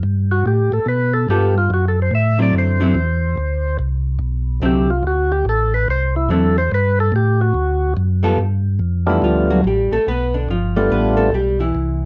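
A percussive tonewheel organ with key click and slow rotary speaker carries the melody, soloing over a mellow, round organ bass line and dark, picked hollow-body jazz guitar accompaniment, the guitar taking its own solo from 8.4 seconds, in this bluesy, greasy swung jazz excerpt at 143 BPM in G major, heard through light reverb and worn, warbling cassette tape with pitch drift.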